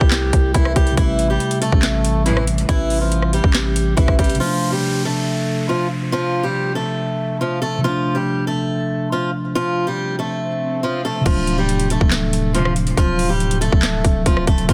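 Menacing and melancholic, this half-time hip hop and trap excerpt puts a bright, boxy fingerpicked acoustic guitar with a swing feel and finger squeak up front over a mellow, clean tine electric piano, while a growling, buzzy 808-style bass and an overdriven trap kit with hard-clipped kick, sharp snare, handclaps, rim clicks, crash and metallic hats drop out at 4.4 s for an electronic downlifter and swell before returning at 11.3 s; brief bowed chamber string stabs with soft attack and digital delay sit in the background, and the dense, heavily limited master carries little reverb.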